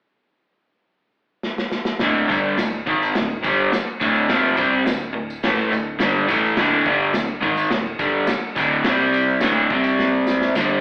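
A straight 4/4 pulse at 105 BPM drives this raw, swaggering garage rock cut from a longer piece, set in D minor and sounding like a small band playing live in one room through an AM radio. A crunchy breakbeat drum kit enters at 1.4 seconds with a fill of kick, snare and dark cymbals, its tight kick and medium-tuned snare coming across saturated and gritty with a rolled-off top. At 2.0 seconds the up-front, double-tracked overdriven guitar comes in over the drums with a bright, picked riff on D5, touched with spring reverb, shifting between D5 and C5 near the end. A round, hollow-body short-scale bass with tube saturation sits in the background from that point, joined at 2.3 seconds by a jingly, vintage tambourine, also kept low. The whole band sits in a moderate large-studio reverb, and a final drum fill from 10.0 seconds carries the passage to its cut-off.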